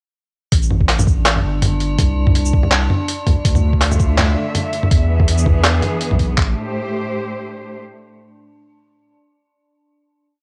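Dark and spacious, this short half-time drum and bass piece in A minor moves at 164 BPM with a swung feel, opening at 0.5 seconds on a gritty, pitched-down sampler kit of thumpy kick and clap beside a sparse, overdriven layer of shaker, closed hat, low tom and clap, all over long, thick sub bass notes. An eerie, warbling FM drone holds a high metallic note from 1.2 seconds with chorus and its own reverb, while a lush bowed cello section enters at 3.4 seconds with slowly shifting, sidechain-pumped chords through Dmadd9 and E. The cellos carry the closing Am7 after the drop ends at 6.4 seconds, and the dry cassette home recording lends the whole track a tape-worn grain.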